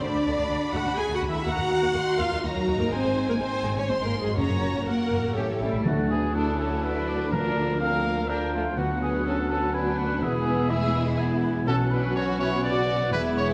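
Heroic adventure film score in triple metre, adventurous and soaring, cut from a longer piece and bathed in the wet reverb of a scoring stage. Lush, vibrato-rich violins carry the melody over a softer second violin line, with expressive violas using portamento, French horn chords in the background, ringing fingerpicked harp arpeggios, a dark and distant cello section and woody double basses beneath. Round soft-mallet timpani enter at 4.4 s, tight trumpet stabs and a pure, hollow flute arrive at 5.4 s, a vintage-toned solo oboe follows at 5.8 s, and a mellow clarinet in the background joins as the second section opens at 5.9 s.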